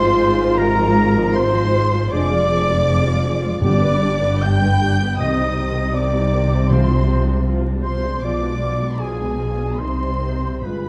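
Rubato phrasing in 4/4 at roughly 70-81 BPM gives this elegiac, yearning classical passage in C minor a freely breathing pulse, cut from a longer piece and lasting about 10.9 seconds. A lush, expressive violin section carries the melody high above the orchestra with soft-attacked, vibrato-rich bowing, while a woody chamber violin section, a shadowy clarinet, an airy silver flute and a warm oboe trace second lines in the background, the reed instruments sounding distant and roomy. A focused viola section with a smooth top fills in the accompaniment, and a dark French horn section holds sustained chords from afar. Underneath, a close, up-front double bass section and an expressive cello section with portamento form a deep bowed foundation. Very quiet timpani, struck with hard mallets on calf heads, sound only from 3.6 to 7.8 seconds as the harmony moves through G to C minor, before diminished colours return and the phrase settles back on C minor. 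A moderate scoring-stage reverb and a dark, warm production with vinyl crackle give the sound an aged, intimate cast.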